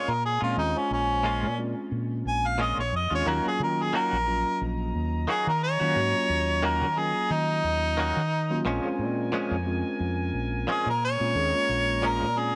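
A lightly swung 89 BPM groove in 4/4 and Bb minor carries this smoky, brooding blues fragment, where an overdriven harmonica with light vibrato and a smooth top solos up front throughout, a mellow tine electric piano with analog chorus accompanies beneath, a bright, twangy clean guitar adds compressed, picked stabs through tremolo, a round, dark fingered bass sits up front, and a clear, loose vintage horn section enters at 3.3 seconds with sustained chords in the background, set in a small room with light reverb as the harmony moves from Bbm7 to Ebm7 and returns to Bbm7 at 8.7 seconds.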